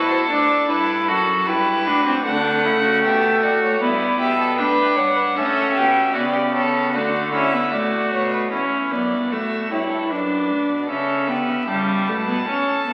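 All four bowed gut-string players enter together at once in this solemn, driving baroque-style fugue for string quartet at 76 BPM in 4/4. A warm-toned first violin with light vibrato carries the melody over a dark, nasal second violin, while the rich, up-front viola supplies the accompaniment and a reedy, distant cello holds the bass. Moving from D toward A7 through a new section at 8.5 seconds, this fragment of a longer piece sits in the wet reverb of a scoring stage and the crackle of a very old 78 rpm record.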